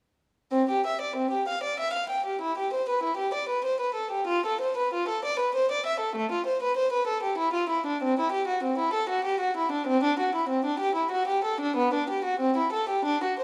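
In a flowing three-beat dance metre at 96 BPM, played with rubato, this baroque-style suite movement in C major unfolds for a single unaccompanied violin from 0.5 to 13.4 seconds, a fragment taken from a longer piece. The close, up-front bowed violin has an airy, nasal, reedy gut-string tone in period style, ranging from A3 to G5. A moderate recital hall reverb surrounds it in a dark, warm production.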